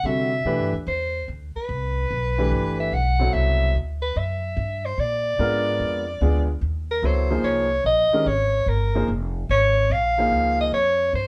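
A mellow soprano saxophone with light vibrato carries a searching, open modal-jazz melody at a swinging 146 BPM over warm baby grand piano chords moving from Cmaj9 to A#7b9 and a woody, thumpy pizzicato upright bass, settling into Eb mixolydian on an Eb9sus4 at 6.6 s before the piano drops out at 10.7 s, all heard as a band playing live in one room under light reverb in this short cut from a longer piece.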